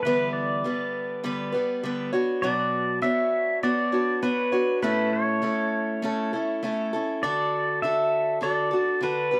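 A twangy, clean pedal steel guitar carries the melody up front with fingerpicked slides and volume swells over a boxy, picked acoustic archtop guitar in this jangly, nostalgic rock excerpt, moving through Em7, Bmadd9, A and D in a moderate studio reverb.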